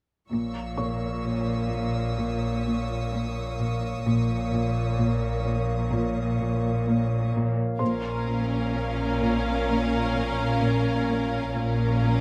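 At 0.3 s this uneasy, mysterious cinematic excerpt opens on a Bb minor chord: a glassy, ethereal glass harmonica holds slow-attack sustained chords while a bowed cello section plays a riff in the background, and a second cello section joins a lush double bass section on the bass, the basses focused and up front. High above, a violin section spins a smooth, vibrato-laden texture, and at 0.8 s a felt-muted upright piano adds a soft, mellow, vintage texture in the background. The piece moves at a slow 64 BPM in a straight 4/4, staying in Bb minor. The high violin texture drops away before the second section begins at 7.8 s, when a violin section carries the melody in the background, another violin section adds an expressive second line, and a clear viola section supplies accompaniment. Close, detailed microphones and light reverb keep the ensemble intimate and present.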